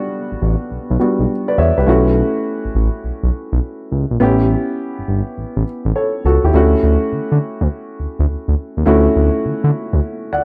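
Dry and close, this cut from a longer piece carries the sound of a 1970s studio with little reverb, framing a confident, punchy R&B groove in new jack swing style at 103 BPM, in 4/4 with a 16th-note swing. An intimate baby grand piano, with audible action noise and short sustain, carries the accompaniment from the start through Em7, F#m7 and A7 before arriving on Dmaj9 at 6.5 seconds. Up front alongside it, a mellow, detuned synth bass blending sawtooth and square waves enters at 0.3 seconds, its fast attack and portamento producing smooth, sustained, gliding low notes.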